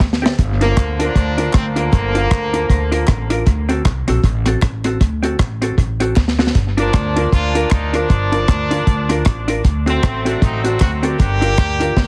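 A clear, tight horn section with light vibrato carries the melody from 0.6 to 3.3 seconds and again from 6.8 seconds, riding dub echo over a driving, energetic swung ska groove at 156 BPM in G minor, where a dry, dark reggae kit with a tight kick and dub echo, woody gut-string pizzicato upright bass, clean picked hollow-body jazz guitar, and very quiet hollow handclaps move between Gm7 and D7 in a dry, heavily compressed radio sound.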